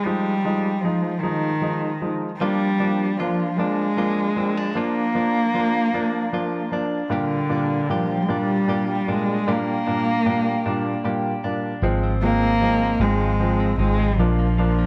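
A single cello carries the melody, bowed by one player with a dark, woody and slightly nasal, boxy tone, its vibrato and portamento giving this melancholic pop fragment an aching quality. A polished grand piano sits up front beside it from the start, providing warm, present accompaniment in a slow 6/8. At 2.4 seconds a clean electric guitar enters with quiet picked arpeggios, recorded direct and compressed, with a touch of spring reverb. The harmony moves from Fm7 through Bb and Gm/Bb, then shifts to Ab6 at 11.8 seconds, where a vintage foam-muted fingered electric bass joins, round and punchy and placed prominently in the mix. The whole sits in a light studio reverb, and the passage breaks off on Bb as if cut from a longer piece.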